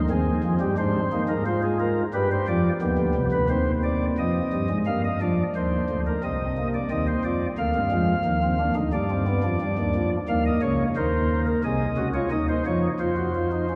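A pipe organ on soft flute stops sits up front in this solemn, contemplative, baroque-style fugue in three parts, cut from a longer piece. The single organ carries the whole passage from 0.0 to 13.8 seconds, its baroque voicing spanning C2 to F5 with a gentle tremulant colouring the warm tone. The metre is a steady 4/4 with a straight feel. The opening passage moves through Cm, Dm7b5/Ab and G7 before settling on Cm/Eb, and at 4.9 seconds a new section turns toward Eb, Cm11, Ddim and G, closing on open Eb5 and F5 sonorities. A wet cathedral reverb with a long 4.4-second decay surrounds the organ, blended with a small-room ambience that lends the sound a spacious, devotional stillness.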